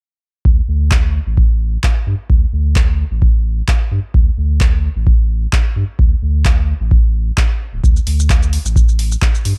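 A deep, tape-warm electronic kick drum sits up front in this raw, trippy acid house excerpt at 130 BPM in straight 4/4, entering at 0.5 seconds alongside a round, sine-toned sub bass that pumps against the sidechain between D1 and G2. From 0.9 seconds a punchy analog drum machine adds handclaps, hi-hat and shaker, its parts carrying the character of being re-recorded in a small room. The mix is dry, with little reverb, and runs as a single section until 9.6 seconds.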